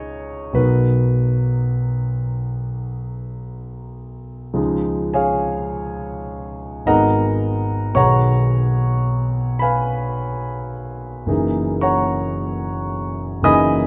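Unhurried rubato in 3/4 lets the pulse breathe and stretch, giving this short passage from a longer impressionist solo piano piece a hazy, serene calm. A clear concert grand carries everything alone, sitting up front with a natural tone, deep bass and long sustain that lets chords such as C#add9 and Bmaj7 linger and blur into one another. The writing spans the keyboard from low F#1 up to a high D#6, so resonant lows sit beneath airy upper notes. At 4.6 seconds the music moves into a new section, drifting through G#madd9 and B6 before settling on a lush F#13 at 11.3 seconds. A wet recital hall reverb surrounds the instrument, softening its edges and adding to the dreamlike glow.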